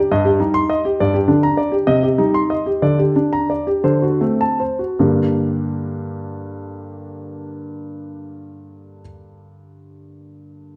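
Grave and solemn, this baroque-style suite movement for solo concert grand piano unfolds in a rubato 6/8, slowing down through its opening five seconds as the harmony moves from C minor over G to a D7 that resolves to G minor at 5.0 s, where a second section begins. The piano sits up front with an intimate, natural tone, a deep bass and audible action noise, set in a moderate recital hall reverb. The passage is cut from a longer piece.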